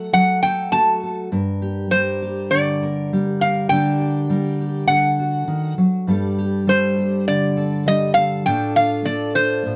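A metal-body resonator slide guitar carries the melody up front, its metallic, nasal tone sung through a slide and played with fingerpicks in a register from C5 to A5. Beneath it, a fingerpicked steel-string dreadnought guitar, also up front, fills out the accompaniment with a full-bodied sound spanning G2 to Bb4. This reflective, melancholic acoustic folk piece, cut from a longer performance, moves at a steady 101 BPM in 4/4 with a straight feel in G minor. The harmony passes from F#m to Gm, then Gm/D and D, before the same section begins again at 6.1 seconds over Gsus2 and closes on F6/A. Close, detailed microphones and a touch of light reverb keep both guitars intimate and clear.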